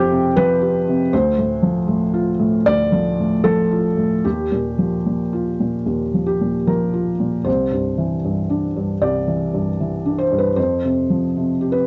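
Neoclassical minimalist piano, tender and peaceful, moving at a rubato 77 BPM in 4/4 with tuning set to A4 = 441 Hz. A felt-muted upright piano plays alone throughout this short excerpt, its soft, mellow, intimate tone sitting up front across a range from C2 to G5 as the harmony drifts through Fsus2, Dm, Ebadd9 and Cadd9 before returning to Fsus2 at 10.6 seconds. The sound is dry and close in a 1970s-style studio manner, touched with light reverb, and the opening section is restated from 7.5 seconds.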